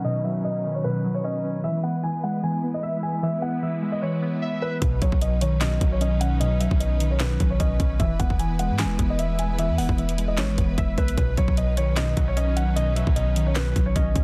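Hip hop and trap in a dreamy, wistful half-time feel, where a dark, mellow concert grand piano carries the melody over warbling, detuned lo-fi synth keys with chorus and lush bowed strings with vibrato, until a deep, boomy 808-style bass and a trap kit with hard-clipped kick, sharp snare, bright hats and handclaps arrive at 4.8 seconds under light digital reverb, filter sweeps and a dense, heavily limited master.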